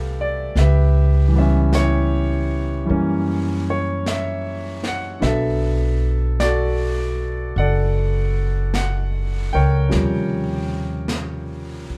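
Late-night and romantic, this slow swung jazz ballad at 51 BPM sets a clear, long-sustaining concert grand piano with deep bass in the accompanying role alongside a woody, growly pizzicato upright bass, both up front. A softly brushed drum kit with a medium-tuned snare and hi-hat joins at 0.6 seconds, and the trio moves through rich chords such as Fmaj9#11, F#7b9 and Eb13 within a moderate studio reverb that places the listener further back in the room.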